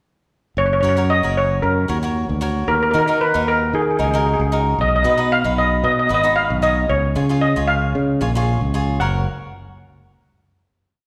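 Sunny and festive, this short calypso at 114 BPM in F# major puts a shimmering, vintage-toned steel pan up front, struck with hard rubber sticks and spinning a motif-based melody, over a punchy fingered electric bass with a syncopated figure and crisp picked cavaquinho triads, moving through F#, D#m, B and C# in a reverberant hall before settling on a closing F# chord at 9.0 s.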